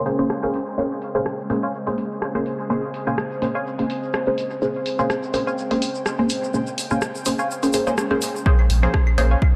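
A swung 125 BPM dub techno groove in 4/4 begins with a tape-warm analog drum machine ticking hi-hat and rim click through dub echo and a muted, detuned chord stab with phaser and sidechain pumping, all around a Bbm9 chord in Bb dorian, soon joined by a grainy, close tube shaker. A second, quieter stab riff sits in the background with subtle chorus and echo, while a moody, detuned pad under a filter sweep and a bright, resonant bubbling texture with random filter steps add a hypnotic, deep haze. At 8.5 seconds the pad drops away and a punchy, up-front electronic kick arrives, joined by background claves and congas and a smooth, clean sine sub bass on Bb1 in this short cut from a longer piece.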